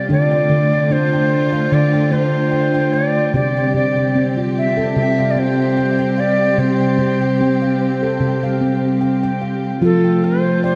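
A dark, dreamy production sits in a wet echo-chamber reverb with a 2.1-second tail, giving this short excerpt from a longer meditative world piece a gentle, spacious glow. At 74 BPM in 4/4, with a light swing on the sixteenths, a stainless-steel handpan rings out arpeggios from C3 to G5, close-miked, full and up front, its sharp finger strokes trailed by a diffuse ambient delay. Alongside it, a reedy cedar flute in the Native American style sings the melody between A4 and E5, airy and woody with a straight tone, tongued chiff and a distant quality, also bathed in diffuse delay. A rich studio string section holds smooth, even bowed chords with ensemble vibrato from C3 to G4. The harmony rests on D minor before moving to a C5 chord at 3.3 seconds, and all three parts play together from 0.0 to 10.8 seconds.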